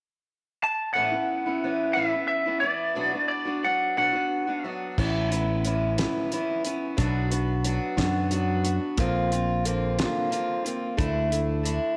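A twangy, slightly broken-up lead guitar sings a short melody over a picked steel-string acoustic guitar with audible finger squeak in this hopeful, open-road folk and heartland rock excerpt in 6/8, before a growly electric bass and a damped 70s drum kit with a fat snare and dark cymbals join at 5.0 seconds, all bathed in a moderate echo chamber reverb.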